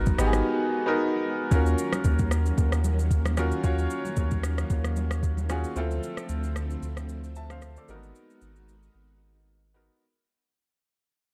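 A clear, worn grand piano opens this deep, hypnotic amapiano excerpt in Eb minor at 113 BPM, set over vintage sawtooth string-machine violas with ensemble chorus sitting in the background, while a very quiet, ringing conga part plays until 5.6 s. An electronic R&B kit with a soft, tape-warm kick, rim click and shaker stays up front with the piano, and a thick, saturated sine sub bass enters at 1.5 s as the piece begins fading out. The chords move from Abm7 to Ebm7 and Dm7 before returning to Abm7, with the drums stopping at 8.9 s, all within a dark production under light reverb.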